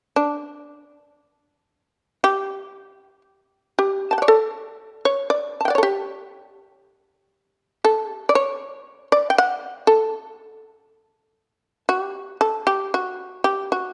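Japanese traditional music, calm and austere, unfolds at a rubato 59 BPM in 4/4 in D Ryukyu as a solo shamisen carries the melody up front from 0.2 to 13.9 seconds, its plectrum-plucked, fretless voice percussive and buzzing across a D4 to A5 range, set in light reverb in this brief cut from a longer piece.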